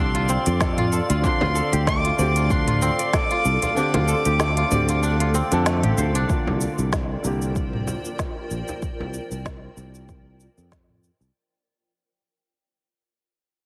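Mystical organic downtempo at 95 BPM with a gentle swing: a clear, biting kamancheh with tape echo sings a distant melody over fingerpicked, ringing kora arpeggios with delay, a soft felt-muted upright piano in the background, a blurred granular cloud pad and a growly, up-front fretless bass pumping under the kick, while a woody, overdriven electronic kit, a deep layered kick that drops out from 3.8 to 6.3 seconds and a hard-handed frame drum drive the groove through a compressed radio sound before the fade-out begins at 6.3 seconds.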